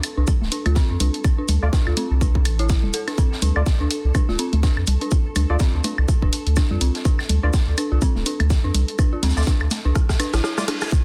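Cool and clinical, this excerpt of minimal techno runs at 124 BPM in 4/4 with a swung sixteenth feel, set in D minor. A tight, up-front electronic kick and a deep, thick, saturated sub bass anchor the groove, the bass pumping under sidechain compression, while a garage drum kit adds bright hats and rim clicks. An acoustic shaker and a medium-tuned, rolled-off snare bring a natural studio-room touch, and analog-sounding woodblock and congas trail off into dub echo. An eerie, inharmonic, detuned FM bell carries the riff with chorus and dub echo, and from 1.6 seconds a hollow, organ-like percussive stab joins with ensemble chorus and echo of its own. Deep in the background, a pulsing gated texture of detuned unison sustains with slow attack and its own reverb, before a drum fill, a reverse cymbal at 10.3 seconds and a brief break close the passage in a dense, heavily limited modern master.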